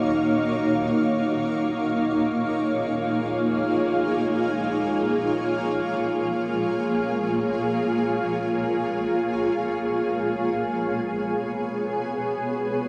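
A granular cloud pad opens alone on an F#maj7 chord, its detuned sine and sawtooth layers in unison forming a blurred, evolving haze. This serene, reflective ambient fragment, cut from a longer piece, drifts in free time, with the pad moving to A#m7 at 1.1 seconds and resting there for most of its length. The pad sits bright and up front, with slow attacks, sustained tones and long releases. Its built-in reverb and diffuse ambient delay spread the cloudy, granular texture. At 10.5 seconds the harmony turns to G#m7 for the closing stretch, the pad spanning A#3 to E#5. The recording is set in a wet concert hall with a 2.1-second reverb and given a dark, warm production.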